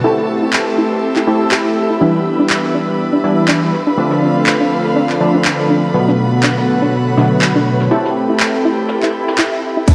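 A swung 122 BPM deep house groove in 4/4 carries this moody, late-night excerpt, with a tape-warm house kit of handclaps, hi-hat, ride and crash entering at 0.5 seconds over a very quiet, distant brushed kit, all set in a lush hall reverb with vinyl crackle. Up-front detuned sawtooth keys stab through Am7, Em7, Dm7 and Bm7 chords with chorus, dub echo and a filter sweep, while a soft, mellow pluck arpeggio, a breathy pad, an ethereal pad and a rich, bowed chamber violin section pump beneath them. A background swell and impact rises at 9.2 seconds, and the punchy electronic kick and a deep, round bass land together at 9.9 seconds.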